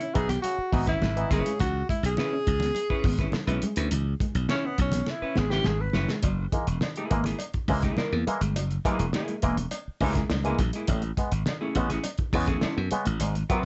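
A mellow, subtoned tenor saxophone solos up front over a muffled, cloth-damped drum kit and a dark, chorused electric guitar riff at the edge of break-up, opening this cool, driving funk excerpt at 103 BPM on C#m7, soon joined by a glassy, growly slap bass, stringy auto-wah clav stabs, damped congas and a clean hollow-body jazz guitar, until a drum fill at 5.1 seconds closes the solo and, from 6.2 seconds, a metallic cowbell enters as the harmony moves through F#9 to Amaj7 under light reverb.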